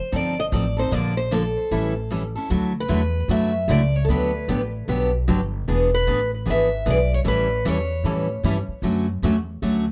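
The recording sounds dark and warm, with a moderate small-room reverb and a soft top end that rounds every edge. This short cut from a longer acoustic string swing piece moves at 151 BPM in a playful, swinging D major. A bright, boxy parlour guitar carries the melody from the first instant, its picked lines touched with analog delay before it drops out at 8.4 seconds. Beneath it, a full-bodied dreadnought guitar picks out the accompaniment, joined by a woody, thumpy upright bass with gut strings, both sitting up front and playing on to the close. The harmony slips from F7 through Bbmaj7 and A7 before settling into Dadd9, then travels through Gmaj7, E7 and A7 to land on Dmaj7.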